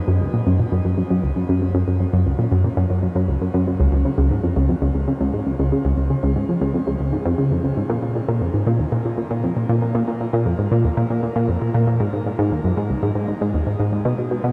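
A long, wet shimmer reverb with an 8.4-second tail hangs over this dark, warm production, giving the space a vast, mysterious glow. This ambient excerpt in straight 4/4 features a single tight sequenced synth playing alone from 0.1 s to the cut at 14.5 s. It sits in the low register, from C#2 to C#3. Its tone blends sawtooth and square waves, detuned against each other, with a filter pluck and a fast attack that give each note a driving edge before it sustains into a mellow body. Chorus and delay thicken the synth and keep it up front in the mix. The result feels expansive and quietly propulsive, as if the pulse is carrying the listener deeper into shadow.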